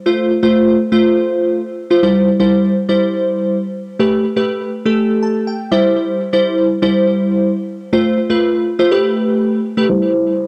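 Glassy digital keys carry this carefree, euphoric pop fragment on their own, playing from 0.1 to 10.3 seconds in a straight, even meter. Their tone is full-bodied and sine-like, with a fast attack that decays into a mellow glow, thickened by chorus and shaded by a low-pass filter sweep. Cassette tape coloring and tape echo lend the sound a homemade haze, and the keys sit up front in a small, wet booth ambience. The harmony moves through F/A, C, Gadd9 and C/G before circling back to F/A and Gadd9 and settling on C. A short synth keys fill from 5.0 to 6.0 seconds adds a flourish midway, keeping the mood buoyant and sunny throughout this piece cut from a longer work.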